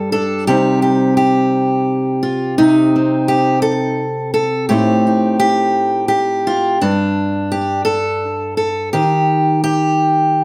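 A fingerpicked steel-string acoustic guitar plays alone from the very start, setting a reflective, intimate folk mood in C dorian. The pace is slow and unhurried, about 57 beats per minute counted in dotted quarters, with a lilting 6/8 metre and a straight feel. The guitar sits up front with a concert-instrument fullness and a touch of slapback echo, ranging from G2 up to A4. The harmony moves from Cm to Am7b5 at 4.7 seconds, then dissolves into a passage of undefined harmony from 6.8 seconds until the fragment ends at 10.4 seconds. Close, detailed microphones and a moderate studio reverb give the playing a clear, present sound, as if caught mid-thought from a longer piece.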